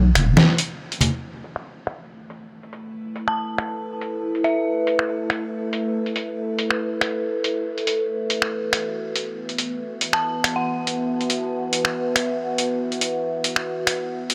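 A gritty, pitched-down sampler-style drum kit of finger snaps, filtered hi-hat and a medium-tuned snare sits up front in this dark, meditative deep dubstep excerpt at 140 BPM with a swung half-time feel, joined by a ringing conga figure with dub echo from 0.4 to 1.1 seconds, a resonant, chorused drone with moving overtones entering at 2.8 seconds as filter sweeps run on both drums and drone from 1.2 seconds, and an eerie, inharmonic FM bell melody with dub echo surfacing twice, all bathed in a huge ambient reverb over chords moving from E5 to A5 to Esus2.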